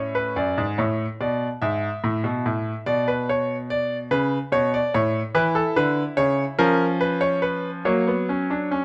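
A close, detailed recording with light reverb places a bright, brilliant grand piano up front, its natural tone ringing clearly in a short excerpt cut from a longer piece. This is a baroque-style three-part fugue in D major and 6/8, moving at a stately 48 beats per minute counted in dotted quarters with a straight feel. The solo piano plays throughout the 8.8 seconds, spanning F#2 to E5, and the mood is joyful yet dignified. Starting from D/F# at 0.4 seconds, the harmony passes through Eadd11/G#, Bm, A and C#m7 before C#7/E# leads to a closing F# at 7.9 seconds. The instrument is tuned to A4 = 439 Hz.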